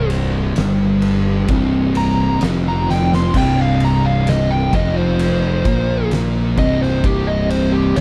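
Stoner and doom metal in C minor at a crawling 65 BPM, heavy and brooding, this cut-off excerpt sets a compressed, distorted fuzz lead guitar soloing with tape echo over two picked fuzz rhythm guitars grinding a riff in the background, one dark and one warm, while a growly, punchy fingered bass sits up front with overdrive and an oversized low-tuned kit with a fat snare, punchy kick and dark cymbals pumps in a bright stone room, snapping into a drum fill at 2.9 seconds, all in a dry mix with little reverb.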